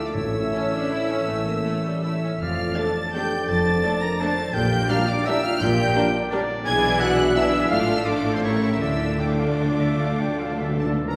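This short excerpt from a longer piece sits in a reverberant recital hall, giving the full orchestra a roomy, resonant glow as it plays a dark, sweeping ballroom waltz in three with a rubato feel. A lush, focused violin section carries the high melody with vibrato, while a second, very quiet violin section sounds distant and intense beneath it, and a smooth-topped viola section fills in the accompaniment from the background. Flutes, a present oboe and a distant clarinet weave second lines around the tune, as a concert harp rings out fingerpicked arpeggios across a broad range. Dark, roomy French horns and a faint, vintage-toned trombone section hold sustained chords, a tight trumpet section adds very quiet stabs, and focused cellos and expressive double basses supply a bowed bass. The harmony moves from A through Dm/F, Gm/Bb and E7/B toward A7b9 and a resolution on Dm at 8.8 seconds, where close, dry timpani struck with hard mallets enter with a fill to the end, having only briefly sounded at the very start.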